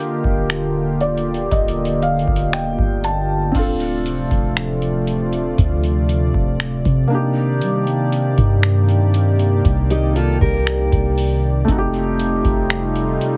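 A muted upright piano, its felt-softened hammers and action noise audible, opens alongside a smooth, detuned pad with chorus in this late-night, longing contemporary R&B excerpt at a slow 59 BPM, the piano adding an early fill. A booming analog drum machine with deep kick, metallic hi-hat, finger snaps and crash sits up front over a round, soft 808-style bass, as the chords move from Ebmaj9 through Dm7 and Cm9 to F9. A dark fingerpicked steel-string acoustic guitar adds brief delayed arpeggios from 9.9 to 11.6 seconds, and the mix carries a heavily compressed radio sound with light reverb.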